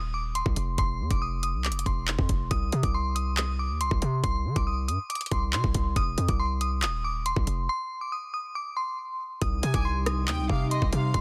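Tense and ominous, this half-time drill excerpt pairs a crystalline FM synth bell melody with chorus and tremolo over heavy, punchy 808-style bass and an overdriven, up-front drill kit of knocking kick, bright hi-hats, handclaps and rim clicks, with a break at 7.7 s before an airy, breathy pad enters at 9.4 s and a lush bowed violin section with digital delay joins at 9.6 s, all in a dry, dense, heavily limited modern mix.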